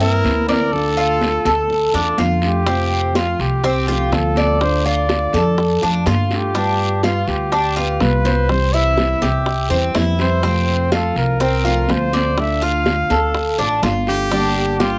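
A whispered, breathy trumpet carries the solo melody with vibrato and a soft attack over a relaxed, warm Cuban son and guajira groove, framed by bright, metallic double-strung tres arpeggios, a thumb-plucked classical nylon-string guitar, a woody, thumpy pizzicato upright bass up front, soft-handed, high-tuned congas in the background, a raspy close guiro, and round low-tuned bongos that join at 2.7 seconds, all heard in a small room with the lo-fi feel of a home cassette recording.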